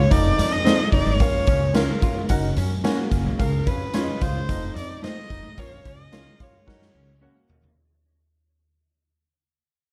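This joyful, uptempo 1960s-style soul cut is taken from a longer piece and moves at 110 BPM in a straight 4/4, cycling through F7, Bb minor, Gb and Db. A close, bowed solo viola carries the melody with vibrato and portamento, its expressive tone bathed in plate reverb and tape echo. Beneath it plays a woody pizzicato upright bass, while a gritty, saturated garage drum kit sits up front, the boomy kick and medium-tuned snare pumping in a bright stone room. A brilliant, worn and slightly detuned upright piano fills out the accompaniment, while an electric guitar through a small old amp picks a compressed, slightly broken-up riff with a vibrato effect. A dark, clean second electric guitar adds fingered stabs in the background through spring reverb and tape echo, and a tight, vintage saxophone section slips in faintly as a second line around 5.6 s, when the band hits an accent before a drum fill at 6.7 s. 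The whole passage sits inside a fade-out, with light reverb and a dark, warm production.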